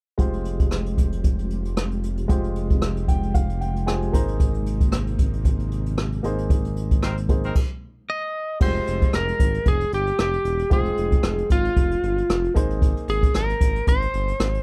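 A dry sound with little reverb frames this urgent, moody slice of 1980s-style pop in F minor, moving at 114 BPM in 4/4 with a light sixteenth-note swing. A brushed jazz kit sits up front with a punchy kick, dark cymbals and a rolled-off top, while a smooth synth bass blending sawtooth and triangle tones holds the low end with a mellow, sustained sound. A clear, polished baby grand piano carries the accompaniment and plays a fill near 2.8 seconds, as a vintage string machine voicing cellos lays full-bodied, chorused chords in the background. A bright, tight horn section stabs at 7.0 seconds during a band accent, and the band then stops briefly. From 8.1 seconds a twangy electric lead guitar, slightly broken-up and compressed, takes the melody over harmony that moves between Fmadd9 and Abadd9.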